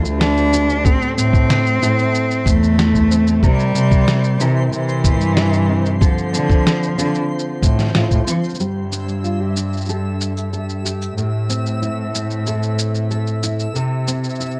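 Wistful and delicate, this folktronica piece sets a fingerpicked nylon-string guitar playing filtered arpeggios over a rich, bowed cello bass line, while a twinkling granular texture shimmers high above with its own built-in reverb. A second cello carries the vibrato-laden melody up front with vintage 12-bit sampler grit and delay until 7.9 seconds. It is driven by a muffled, pitched-down sampler kit of thumpy kick, fat snare and shaker, and the kick drops out during a band accent, as a filter sweep on the guitar opens the closing section at 8.6 seconds in a dark, lightly reverberant mix.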